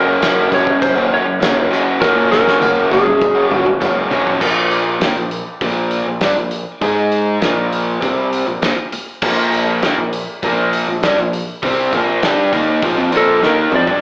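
A straight, swaggering classic rock groove is driven by a cloth-damped, thuddy drum kit with a fat snare and dark cymbals, joined by a growling overdriven fingered bass, an up-front biting guitar riff with spring reverb, a raw garage guitar riff in the background that drops out between 4.4 and 9.2 seconds, a lightly broken-up lead guitar melody and a faint jingly tambourine, all caught live in one room with a wet reverb and an AM radio sound.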